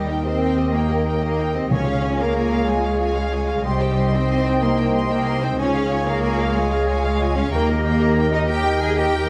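In a 12/8 at 124 BPM counted in dotted quarters, this cinematic passage from a longer piece moves in a straight, soaring feel, coloured by Db lydian and triumphant in mood. A lush symphonic violin section carries the melody high between Eb5 and C6 with smooth, even vibrato, while a rich studio violin section sits in the background with expressive second lines. An airy flute ensemble, a clear oboe and a very quiet dark clarinet add further inner voices, with a close, very quiet viola section filling out the accompaniment. A dark French horn section holds soft-edged sustained chords until 8.9 s, and a ringing concert harp plays fingerpicked arpeggios underneath. Distant bowed cellos and up-front double basses anchor the bass, timpani sound a Db3 between 1.7 and 2.2 s, and the harmony moves Eb, Db, Cm, Db and back to Eb within a recital hall reverb.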